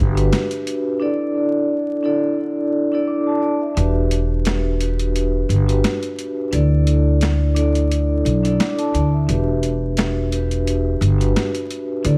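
A soft-mallet vibraphone, mellow and ringing through cassette-tape coloring, filtering and analog delay, opens this dark, moody boom-bap hip-hop excerpt in E minor at 87 BPM alongside a woody, up-front pizzicato upright bass, the two moving between Em7 and Dsus2 chords. Gritty, overdriven sampler-style drums enter at 0.2 seconds, drop out at 1.0, and return at 3.8 as compressed hi-hat and snare with a lightly swung 16th-note feel. The echo-heavy mix sits in a dry space with vinyl crackle.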